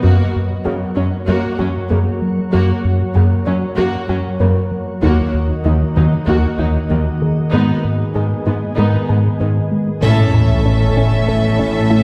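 A straight 4/4 pulse at 96 BPM drives this relentless, futuristic hybrid orchestral and electronic film cue, where a deep, evolving analog bass riff and a very quiet detuned analog pluck arpeggio move beneath a glassy, warbling FM pad with ensemble chorus, while a focused viola section, a background cello section and a dark, boxy grand piano fill in the texture over chords moving from F# to D#m and G#m. At 10.0 s a band accent and a huge, bright sub drop mark the shift to A, as an intense chamber violin melody enters with a lush second violin line, a very quiet French horn section and a distant double bass section. The whole cue sits back in a wet scoring-stage reverb.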